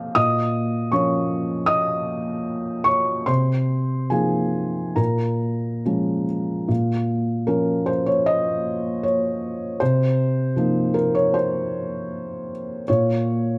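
Wistful and intimate, this brief excerpt of neoclassical minimalist piano features a solo felt-muted upright piano, dark and mellow with thick felt and audible action noise, sitting up front in light reverb as it plays with rubato freedom through a phrase stated twice, from 0.0 to 6.7 seconds and again to 13.6 seconds.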